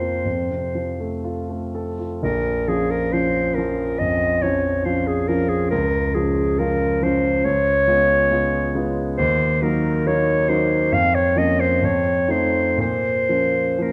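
Solemn and elegiac, this short romantic classical passage in Bb minor moves at a flexible 68 BPM in 4/4 with rubato. An up-front solo clarinet with a smooth top sings the melody over a concert grand piano accompaniment rich in deep bass and long sustain, while a dark production and a lush scoring-stage reverb frame a harmonic path that turns through Db7 and Ebm before resolving via F7 back to Bbm at 12.8 seconds.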